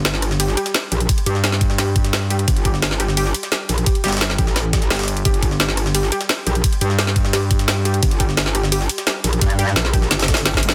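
Aggressive and futuristic, this excerpt of dark technical drum and bass sets a saturated, metallic wobble bass and an up-front kit with a woody snare and bright hats over a gritty, pitched-up jungle sampler-style kit in the background and a lo-fi, detuned, warbly pluck arpeggio with chorus, delay and sidechain pumping, before a knocking, overdriven electronic kick enters at 1.1 s, a thick, growling FM bass joins at 1.3 s, and a drum fill arrives at 10.1 s in a dense, heavily limited mix with light digital ambience.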